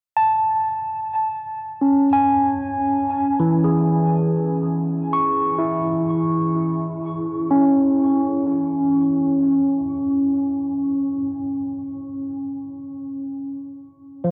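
An overdriven tine electric piano enters at 0.2 s and carries this reflective, melancholic ambient fragment alone, drifting in free time across a range from E3 to C#6. Its tone is barky and gritty, pushed through a combo amp and placed up front, with a phaser and a diffuse ambient delay coloring each phrase. The harmony rests on an Eadd11 chord until 9.6 s, when it gives way to an unharmonized stretch. A huge, wet ambient reverb with an 8.6-second decay surrounds the sound, and the worn cassette tape adds a warbling pitch drift, with the tuning set to A4 = 438 Hz. Cut from a longer piece, the 14.3-second passage feels like a hazy, half-remembered moment.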